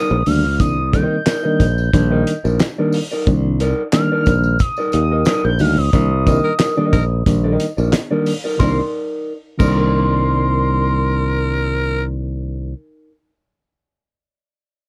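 Cool and funky, this straight-feel groove in 4/4 is cut from a longer piece. A smooth, nasal synth lead with chorus and vibrato carries the melody over a dark, clean electric guitar with spring reverb, reedy electric piano stabs with fast tremolo in the background, and a bright, growly fingered electric bass placed up front. A cloth-damped, thuddy drum kit with a fat snare, tight kick, dark cymbals and handclaps drives the groove from 0.3 seconds, through a band accent at 5.9 seconds, alongside a jingly tambourine until both stop at 9.8 seconds. Meanwhile, a raspy, gritty tenor saxophone adds a punchy second line from 6.4 seconds, all with a dry, cassette-tape character.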